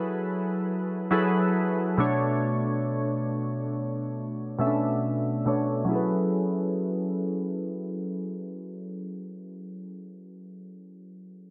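Sensual and late-night in mood, this short R&B excerpt drifts at a slow, straight pulse in 4/4. A single part carries it throughout: warm analog synth keys in an accompanying role, up front and round, blending square, sawtooth and triangle waveforms with a detuned, chorused shimmer and a touch of ring modulation. Each note has a fast attack and then decays, and a filter sweep runs over the keys for the first 5.9 seconds, while the low-pass-filtered tone keeps a bright edge. The harmony moves from F#m11 to Bm9 and back to F#m11 at 5.9 seconds, where a second section begins. A lush hall reverb with a long tail surrounds the keys, while the dense, heavily limited modern master keeps the sound full and close until the cut at 11.5 seconds.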